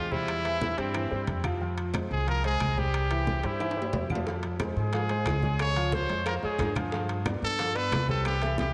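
A bright, punchy trumpet opens the fragment up front with vibrato, carrying a pop-style solo melody over clear, polished baby grand piano chords and a woody pizzicato upright bass on steel strings. This is a driving, danceable salsa at 181 BPM in 4/4 with a straight feel, set in F harmonic minor and moving through chords such as Fm, Db and G7. Low-tuned congas played with soft hands sit in the background with a thick-skinned, warm tone, joined by ringing metal-shell timbales and very quiet, dry claves. A drum fill arrives at 3.6 seconds, and tight, high-tuned bongos with a vintage, band-limited character enter at 4.3 seconds, with another fill closing things out from 8.2 seconds. A delay trails the trumpet, and a lush hall reverb soaks the mix in a dreamy wash.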